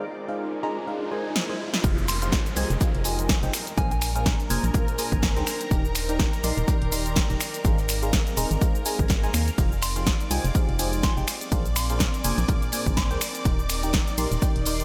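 Piano house with an energetic, soulful lift, cut from a longer piece: a biting, barking FM electric piano riff with phaser and tape echo plays throughout over bright, shimmering string-machine violins and an airy, breathy pad, each pumping with the sidechain, while an electronic riser and downlifter open the passage. A drum fill from the analog drum machine at 1.4 s leads into the drop at 1.8 s, where an up-front, punchy electronic kick, a hollow, organ-like FM bass and a very quiet, dry reggae kit with a high-tuned snare join the machine's snaps, hi-hat, ride, snare and shaker. A soft, pure synth bell with chorus and phaser sits in the background over jazzy ninth and major-seventh chords, set in light digital ambience.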